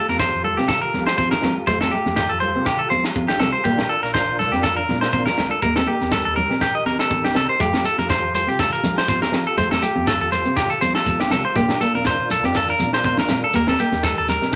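A carefree highlife guitar band groove opens with a dark, thumb-plucked nylon-string guitar playing accompaniment beside a clear tonewheel organ holding sustained chords, its slow rotary speaker, chorus vibrato and key click sitting in the background. Over them, a bright, twangy clean electric guitar plays picked, compressed arpeggios up front, the most prominent voice in the mix. Almost at once a fingered electric bass settles in underneath with a direct, warm tone, while a tight funk drum kit with a high-tuned snare and tight kick drives the 122 BPM swung 4/4 pulse from a small room. Close, dry congas played with soft hands ring out alongside distant, very quiet agogo bells. At 7.6 s a grainy, mellow shekere joins in the background as the F mixolydian progression of Fadd9, Bb and Eb comes round again, all bathed in a wet studio reverb in this short excerpt from a longer piece.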